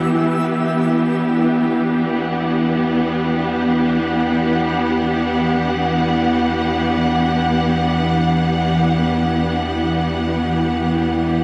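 Bathed in a wet concert-hall reverb, this reflective, melancholic ambient fragment drifts in free time in E minor, tuned to A4 = 438 Hz, resting on a single Em9 chord. A clear, focused symphonic string section sits up front with bowed, vibrato-rich sustained chords, shaped by a low-pass filter sweep and a shimmer reverb, while a soft, felt-muted upright piano offers dark, boxy arpeggios only until 2.9 seconds. Beneath, a round sub bass fades in and an evolving, warbling analog drone with vintage detuned chorus hums in the background.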